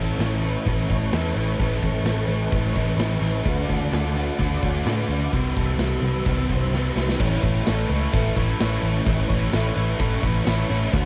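A hollow, flute-like pad and a lo-fi arpeggiated guitar through a small old amp, lush with chorus and analog delay, open this blissful, hazy shoegaze and dream pop excerpt alongside a biting overdriven riff, an up-front crunchy riff guitar trailing reverse reverb, and a round, foam-muted bass, while a big rock drum kit with bright cymbals and a punchy kick enters at 0.2 seconds and plays a fill at 6.7 seconds, all captured as a dry home recording on cassette.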